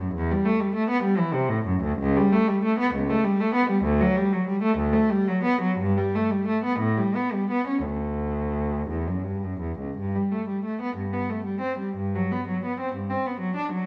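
Swaying dotted-quarter pulses in 6/8 move at roughly 54-68 BPM, stretched and relaxed through free rubato, giving this baroque-style suite movement a flowing, dance-like lilt. A single bowed cello carries everything alone, reaching from C#2 up to D4 with an expressive vibrato and gliding portamento between notes. Its tone is warm and sits up front, though it also has a distant quality. The music opens in D major and turns to G major at 10.0 s, where the opening material returns, before the fragment breaks off at 13.9 s. A reverberant stone room wraps the instrument in a wet, dark ambience, and the tuning rests slightly high at A4 = 441 Hz.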